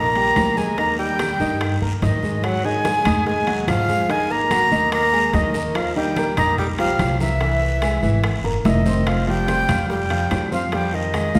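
A straight 4/4 groove at 145 BPM drives this lively, danceable slice of Afro-Cuban jazz, cut from a longer piece and centred on Eb. Ringing congas and metal-shell timbales sit in the background, with tight, high-tuned bongos played by soft hands, a raspy guiro and distant, woody claves adding a faint layer on top. Up front, a bright, breathy flute carries the melody with a crisp, chiffy attack and a straight, reedy tone, while a close-miked tenor saxophone adds a lower second line with scooped notes. A concert grand piano gives clear, natural accompaniment with deep bass, and a dark, thumpy pizzicato upright bass anchors the harmony as it moves through Ab, C7alt and Fm7. A drum fill at 8.4 seconds marks the turn toward the final chord, and the whole performance is wrapped in the wet reverb of a recital hall.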